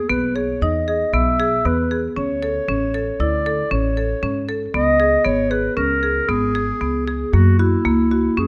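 Close, detailed microphones sit inside a moderate recital-hall reverb, giving this short cut from a longer piece a clear, present sound with a natural sense of space. It is contemporary chamber music in an uneven 5/4 at 116 BPM with a straight feel, and the mood is restless and playful. A dark, roomy clarinet in a classical style carries the solo melody from the first moment. A marimba played with hard mallets on padauk bars spins bright, percussive arpeggios with a dry, full tone. An acoustic upright bass enters at 0.1 seconds, plucked on steel strings with a growly, thumpy, woody sound. The harmony moves from Emaj7 through D5 and C#5 before landing on F#7 at 7.3 seconds.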